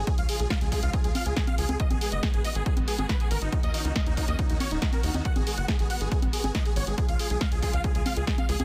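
Uplifting trance at 139 BPM in G# dorian with a bittersweet, emotional mood, cut from a longer piece, where a huge, detuned supersaw lead carries the melody with delay over clear, bowed studio strings holding sustained chords through a C#, G#m7, D#m7 progression, driven by a tight, dark sequencer bass, an up-front dry electronic kick, and a punchy analog drum machine playing congas, hi-hat and snare, with sidechain pumping on the lead, strings, bass and drum-machine parts, little reverb, and a dense, heavily limited modern master.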